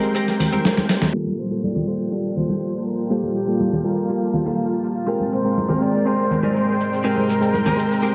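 Nu-disco with a sensual, sleek mood, this short excerpt from a longer piece moves in a straight four-beat groove through lush Abmaj9 and Gm9 harmony. A reedy electric piano carries the accompaniment with a touch of delay, while a vintage string machine holds sustained, mellow sawtooth chords with a sub octave, slow attack and ensemble chorus. A dusty, sampler-style drum kit sounds gritty and overdriven, with cabasa, hi-hat, snare and crash all filtered dark, and ringing congas with hard hands add band-limited color. A clean, picked electric guitar sits in the background playing a riff through lush chorus and delay, and a filter sweep runs across it for the rest of the excerpt after a drum fill and band accent around 1.0 seconds. At 1.4 seconds a breathy concert flute enters with the melody, expressive with vibrato, lifted highs and tape echo, and the whole mix is soaked in a dreamy cathedral reverb.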